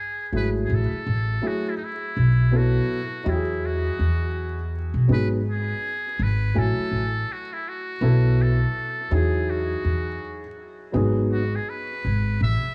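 A breathy, buzzy trumpet with a metal mute opens this cool, relaxed hip hop excerpt at 82 BPM in E major, carrying a whispered jazz-style melody through an analog delay over a swung sixteenth-note feel. From 0.3 seconds, a dark, mellow concert grand piano with audible action noise adds delayed accompaniment and drops out at 11.4 seconds, while a woody, up-front pizzicato upright bass anchors the low end to the close. The dry, echo-heavy mix is dusted with vinyl crackle, and the harmony cycles through lush chords such as F#m9/A, B7sus4 and Emaj9.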